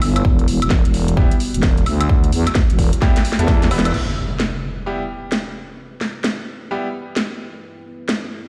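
A growling, thick FM bass with tube saturation and sidechain pumping drives this aggressive, swaggering bass house fragment, joined by a punchy electronic kick and a swung garage kit with a cracking snare, hi-hat, crash and woodblock, all up front. Brilliant grand piano stabs with tape echo and pumping enter at 1.2 seconds over a very quiet, moody, detuned analog pad holding sustained chords. After a drum fill and a band accent, the bass stops at 3.9 seconds as an electronic impact hits and a filter sweep moves across the pad, heard through a large studio reverb.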